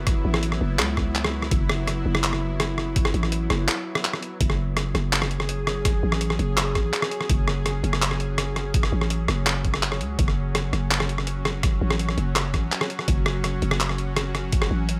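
Spacious and tense, this half-time drum and bass cut opens straight into a drop, where a nasal, string-like drone holds sustained chords with vibrato and built-in reverb, pumping under sidechain. A growling, buzzy 808-style bass sits up front beside a gritty, pitched-down sampler-style kit of handclaps, hi-hat and rim click, while an overdriven, knocking electronic kick adds weight. A short break at 3.7 seconds leads into a second drop at 4.4 seconds, and the kick drops out at 14.6 seconds.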